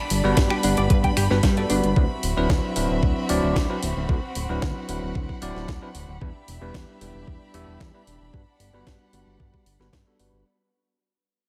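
Groovy and sunny, this nu-disco excerpt, cut from a longer piece, moves at 113 BPM in a straight 4/4 over a chord cycle of Gmaj7, D13 and Em7. A fat, saturated analog bass with a detuned sawtooth edge sits up front under a filter sweep, paired with a thumpy, sampler-style electronic kick that carries tape warmth and the air of a large room. A layered house kit adds finger snaps, hi-hat and a cracking snare with a small-room character. A bell-like tine electric piano, bright and direct, supplies accompaniment through 12-bit sampler grit, a low-pass filter, delay, sidechain pumping and its own filter sweep, while a rich, close studio violin section holds bowed chords with vibrato and the same pumping. A clean, picked electric guitar riff with lush chorus and delay appears briefly, from 0.5 to 1.7 seconds, and the whole passage sits in light digital ambience as it fades out.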